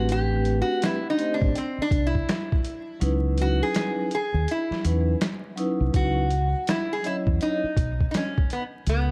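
A dark, smoky production with vinyl crackle, light reverb and digital ambience frames this mellow jazz-hop excerpt, set in C# minor at a swung 82 BPM in 4/4. A bright, nasal lap resonator guitar sits up front, playing a slide solo with fingerpicks and a steel bar over the opening section. Beneath it, a vibraphone struck with soft mallets rings with a slow motor vibrato, and a deep, round dub bass, fingered and punchy, anchors the low end. The gritty, pitched-down boom bap kit has a thumpy kick, a medium-tuned snare and hi-hat, compressed and re-recorded in a large room. At 3.0 seconds the harmony moves from Am11 to C#m11 and the kick drops out, returning when a new section begins at 5.9 seconds. The vibraphone stops at 7.6 seconds, leaving guitar, bass and drums to carry the close.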